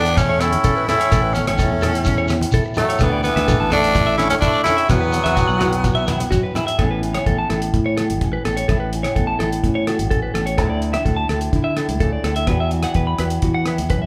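Highlife guitar band music in A major at 127 BPM, this joyful passage from a longer piece moves in a straight 4/4 over a repeating cycle of Aadd9, Dsus2 and Esus2. A raspy, gritty tenor saxophone carries the melody up front with vibrato and scooped notes, while a brilliant, roomy trombone sits further back on a second line. Both horns play only until 6.3 s, and the grainy shekere and soft-handed, low-tuned congas drop out at 6.7 s, just before the second section begins at 6.8 s. Through the whole cut, a fingerpicked nylon-string guitar with audible finger squeak supplies deep classical accompaniment, a bright, twangy, compressed electric guitar picks arpeggios high above it, and a direct, amped fingered bass anchors the low end. A dry, dark 70s drum kit with a tight kick, hi-hat and rim click keeps time alongside distant, ringing agogo bells in the background. The band sounds as if it is playing live together in one large studio, with a moderate reverb giving the room a warm glow.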